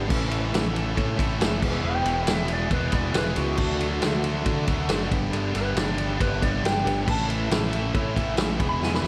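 A straight 4/4 pulse at 138 BPM drives this sunny, confident classic rock excerpt, with a vintage acoustic drum kit up front: punchy kick, medium-tuned snare, and dark ride and crash cymbals with a rolled-off top. A growling picked electric bass sits just as close, overdriven and punchy, while three guitar riffs fill in behind it: a bright cranked stack guitar and an overdriven electric guitar, both picked and given slapback echo, plus a very quiet, tight distorted guitar that is double-tracked. In the background, an overdriven reed electric piano adds barky, gritty accompaniment with fast tremolo and slapback echo, played through a combo amp. At 1.8 seconds a clean, twangy lap steel guitar enters with the melody, a fingered slide line with volume swells and its own slapback echo that carries the solo character of the passage. The chords move from Aadd9 to E, D and Gadd9 before returning to Aadd9, and a drum fill arrives at 8.8 seconds. 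A lush hall reverb blended with small room ambience gives the whole mix a big arena sound.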